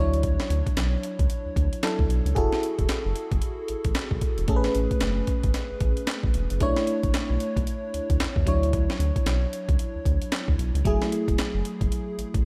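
New jack swing R&B with a bouncy, slick feel at 113 BPM, its sixteenths swung, in a short excerpt cut from a longer piece. An up-front, gritty sampler-style breakbeat kit of thumpy kick, high-tuned snare, handclaps and hi-hat drives it, while a deep, round analog bass sits underneath. A lush, dreamy FM electric piano with a soft pad layer and chorus moves through Dmaj9, F#m9, Amaj9 and Bm11 in light digital ambience.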